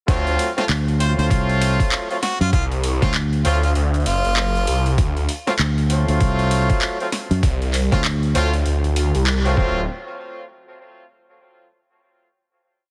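A swirling, detuned saw bass with phaser and overdrive drives this swaggering, gritty glitch hop piece at 98 BPM with a swung 16th feel, joined by an overdriven, thumpy electronic kick, a layered kit of cracking snare, metallic hats and claps, a punchy fingered electric bass answering the other bass, syncopated rootless stabs from a jazz-style horn section with tape echo and sidechain pumping, and a clear harmonica's scooped, short answering phrases with 12-bit sampler grit between 1.0 and 4.9 s, over a D7#9 chord in a heavily compressed radio sound before a final hit at 9.9 s.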